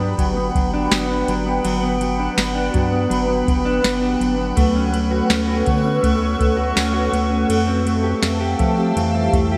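A mellow, clean electric guitar sits up front, playing fingered arpeggios washed in lush chorus and delay over a cloudy, slowly blooming granular pad that holds blurred, detuned chords through its own reverb and analog chorus. This floating, ethereal dream pop excerpt moves at 82 BPM in G lydian, drifting from Gmaj7 to Dmaj7 at 4.6 seconds and Fmaj9 at 7.5 seconds. A round, dark analog bass and a soft vintage rhythm box with a deep kick, crisp snare, ride cymbal and tambourine sit underneath, all set in a lush hall reverb with bright 1980s-style digital production.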